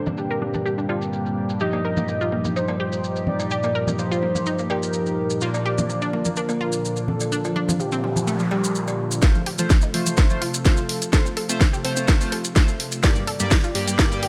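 A velvety, warbling synth lead carries the melody of this driving, emotional progressive house excerpt over a lush, thick unison pad with vintage sampler grit, glossy chorused polysynth stabs and detuned analog pluck arpeggios, joined by grainy maracas and soft-handed bongos, congas and cowbell set back in the mix until 9.0 seconds. A noise sweep arrives at 7.8 seconds, and at 9.2 seconds a punchy, up-front electronic kick and a house kit with a cracking, filtered snare and hi-hats drive a build-up and drum fill.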